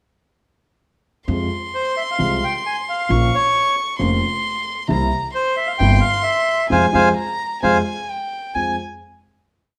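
A marcato tango rhythm in two from the dark, mellow grand piano and the woody pizzicato upright bass, loosened by rubato, carries this brief, melancholic and tense piece, as a reedy, airy bandoneon leads with a motif-based melody in sentence phrases and a single intimate violin, played sul tasto with light vibrato and a soft attack, weaves a close counter-melody, the band striking an accent from 6.7 to 8.6 seconds before a final chord rings in a moderate large-studio reverb.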